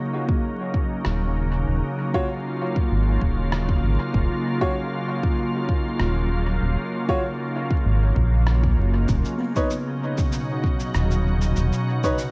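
An organ-like pad opens this meditative, spacious ambient dub excerpt, its detuned, chorused chords sustaining over a deep electronic kick, a muffled, pitched-down rim click and shaker trailing dub echo, and a round analog bass with a ring-modulated edge sitting up front. From 2.1 seconds a clear upright piano adds short, woody stabs with audible action noise, echoing into the space, while the chords move from Ebm9 to Badd9/D# at 9.1 seconds. A buzzing kalimba enters in the background at 9.4 seconds with soft, hollow arpeggios through tape echo, all over a bed of vinyl crackle.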